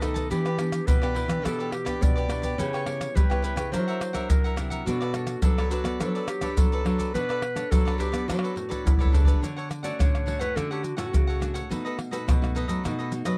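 Up-front, close and dry percussion of maracas, tight surdo, pandeiro and tamborim drives this sunny, lively samba and choro cut at 105 BPM in B minor, with a drum fill at 8.3 s leading into a move to D major at 9.4 s. A woody, full-bodied nylon-string guitar with old strings fingerpicks the bass line, while crisp, bright picked cavaquinho and a warm, fingerpicked classical guitar in the background fill in chords such as Em7, F#aug7 and Dmaj7. A clear, classical-style clarinet carries a second line before stepping forward for a solo at 9.4 s, all captured in a dry, close 1970s-style studio sound.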